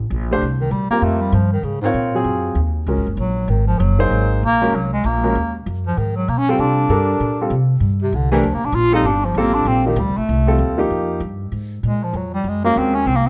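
Spiritual and searching, this modal jazz excerpt swings at 194 BPM in 4/4, cut from a longer piece and built on suspended ninth chords that move between C9sus4 and Ab9sus4. A breathy bass clarinet takes the solo up front with a clear subtone, light vibrato and scooped notes, entering at 0.6 seconds, while a woody pizzicato upright bass on steel strings carries the low end from the start. A grand piano with short sustain supplies the accompaniment, all set in light reverb with close, detailed microphones.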